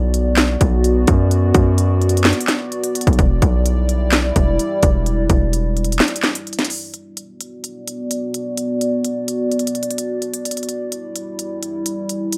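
Dark and hard-hitting, this trap excerpt moves with a heavy half-time feel over a moody, two-chord minor progression. A deep analog pad holds sustained chords throughout, its detuned square, sawtooth and triangle tones thickened by a sub octave, chorus and phaser, with slow attack and long release. Underneath, a punchy 808-style bass with a saturated sine body and noise layer hits hard with a fast attack and decays before dropping out at 6.0 seconds. The electronic drum kit sits up front with a hard-clipped kick, sharp snare, crisp hi-hats and handclaps, though the kick falls silent briefly before a filter sweep on the pad begins at 6.9 seconds. The whole recording carries a dry, gritty hardware character set in a digital ambience.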